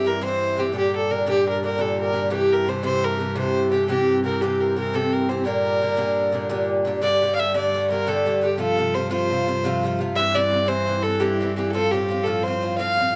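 A 9/8 slip jig drives this dark yet spirited Celtic folk passage, taken from a longer piece, with a second section arriving at 7.0 seconds. Up front, a rich, nasal fiddle carries the bowed melody with an earthy body and a smooth top, while an acoustic Irish bouzouki picks the accompaniment on metallic double strings. Beneath them a distant cello holds a single low drone, bowed sul tasto with a soft attack and a pure, floating warmth, all set in a moderate studio ambience.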